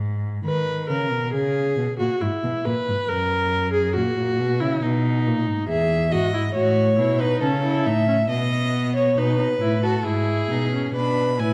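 In a straight three-beat metre, this baroque-style classical fugue for string quartet moves at a stately, elegant pace, cut from a longer piece. A single bowed cello opens at 0.0 seconds with a focused, rich bass line, sung with vibrato and set close and up front, and a lone viola joins moments later with a smooth, even accompaniment in its middle register. At 5.7 seconds a violin enters with a second line, its bowed tone full, vibrato-rich and centred, set up front. Only at 11.0 seconds does a second violin arrive with the melody high above, its close, warm sound quieter than the rest. The harmony moves through B, E and F# toward an A chord over C# and a diminished chord on G# near the end. A dark production and a lush scoring-stage reverb give the ensemble a spacious, resonant setting.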